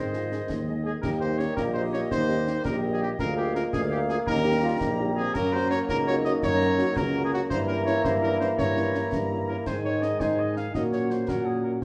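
This military-style march for wind band strides along at 111 BPM in a straight 6/8, counted in dotted quarters, with a rousing, proud mood across this 11.8-second excerpt cut from a longer piece. A warm, distant cornet carries the melody with light vibrato in a roomy classical style, while a mellow euphonium in the background and a tight woodwind section with gentle vibrato supply second lines. A clear, present trombone section holds sustained chords in the background, and a very quiet, close-miked French horn section adds soft accompaniment from 0.1 seconds. Up front, a mellow tuba anchors the bass, and concert snare drum, concert bass drum and clash cymbals with dark cymbals drive the march from 0.1 seconds. The harmony moves through chords such as Ab, Eb, Bb7/D, Gdim7 and Gb/Bb, all set in a wet large-studio reverb that places the band further back in the room.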